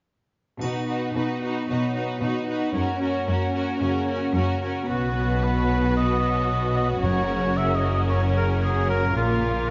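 Triumphant and adventurous, this brief cut from a heroic adventure film score moves at 113 BPM in a straight 4/4, with a clear, intense violin melody over a lush, rich second violin line, clear violas, a mellow French horn section holding chords until 4.6 s, ringing harp arpeggios in the background, a smooth cello bass, and a dark triangle touch at the start, before a punchy, up-front solo oboe and a rich, smooth double bass section join at 4.9 s and a very quiet, dry timpani note sounds at 7.0 s, all within a moderate scoring-stage reverb and a softened top end.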